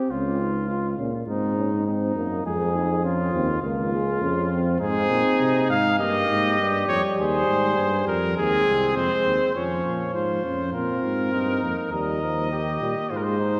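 A church reverb with a long 2.6-second tail surrounds this stately yet lively classical excerpt, an imitative brass canzona in Db major at 102 BPM, where a warm, close-miked flugelhorn second line, a distant, roomy euphonium accompaniment and an up-front, smooth-topped bass trombone open together before a clear, soft-attacked trumpet enters with the melody at 4.8 seconds, every horn carrying a light vibrato, and the harmony moves from Db through Ab and Eb/G toward a closing Eb.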